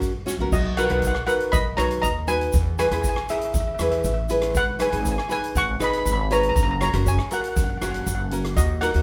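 A bright, shimmering steel pan carries the melody from 0.5 seconds in this bouncy, festive calypso excerpt at 119 BPM in B major, backed by fingerpicked nylon-string guitar, a woody, growly upright bass, a soft-mallet drum kit with dark cymbals that plays a fill at 0.3 seconds, and a grainy tube shaker sitting in the background.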